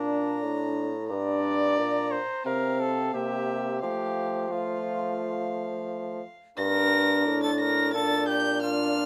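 A punchy cornet with light vibrato carries the melody up front in this stately, festive renaissance-style consort dance in F major at 88 BPM, joined throughout by a reedy, gut-string violin on a high second line, a clear trombone in accompaniment and a warm solo bassoon on the bass, all set in a moderate large-studio reverb across chords from Bb through Gm and C7 to F.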